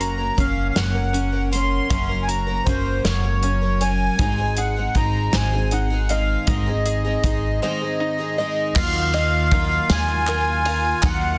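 A dense, heavily limited modern master with light studio reverb carries this uplifting, hopeful indie folk fragment in a slow 6/8 at 53 BPM, where a reedy, sweet accordion melody sits up front over a woody pizzicato upright bass and an airy, polished country drum kit with a punchy kick, while a fingerpicked steel-string guitar and a plunky, twangy open-back banjo playing arpeggios through digital delay sit in the background alongside a shimmering, octave-doubled twelve-string guitar as the chords move from Gb to Ab; at 8.7 seconds a nasal, straight-muted trombone with light vibrato and delay adds a second line, and at 8.8 seconds the arrangement builds into an Ebmadd9 as crisp group handclaps and a jingly tambourine join.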